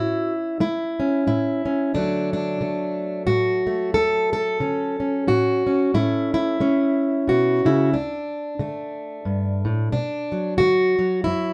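A gently swung 3/4 feel at 90 BPM carries this brief, pastoral folk excerpt in D major, where a solo fingerpicked, plugged-in steel-string acoustic guitar sits up front with a warm concert tone, ranging from D2 to A4 in moderate studio reverb as it moves through A, Dmaj7 and D5 before turning to B minor at 9.9 seconds.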